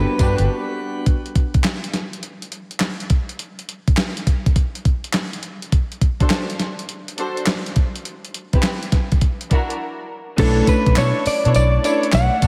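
This punchy, slick new jack swing excerpt at 103 BPM opens on a Gmaj7 chord with clean, direct-recorded electric guitar melody, a lush, chorused FM electric piano with tremolo over a soft pad, brilliant plenum pipe organ chords and a dark, round muted bass. A crisp, thumpy 8-bit drum machine sits up front from 0.2 seconds with a fat snare, handclaps, hi-hat, tambourine and crash, swinging its 16ths through breaks and a chordless stretch. Smooth, expressive bowed string stabs return at 6.2 seconds over D7, Cmaj7 and F#aug7 before the guitar, electric piano and bass come back on Bm11 at 10.4 seconds, all set in a big arena-style hall reverb with slapback echo on the guitar, keys and strings.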